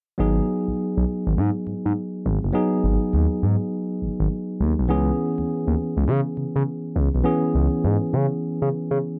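A smooth, gliding synth bass with a wave-folded sawtooth-and-triangle edge, vibrato and portamento sits up front beside a clean tine electric piano heard through built-in speakers, carrying this bouncy, confident new jack swing R&B excerpt in G# minor at 102 BPM with a 16th-note swing, moving from G#m7 to C#m7 at 4.9 seconds in a digital ambience.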